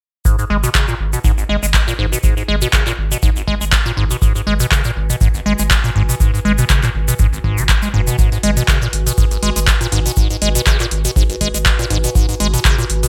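A lightly swung sixteenth-note groove in four drives this trippy, raw acid house excerpt, built on a deep electronic kick, a booming analog drum machine placed up front with handclaps and metallic hi-hats in gated reverb, and a grainy, close egg shaker. A squelchy, resonant liquid acid bass riff with a filter sweep, phaser, tube saturation and digital delay sits up front over a round, nasal analog bass with sidechain pumping, while a warbling, nostalgic tape-like pad fades in from 0.3 seconds in the background with chorus, reverb and the same pumping. The production is bright and 1980s-style digital, with light reverb over a single minor-seventh chord.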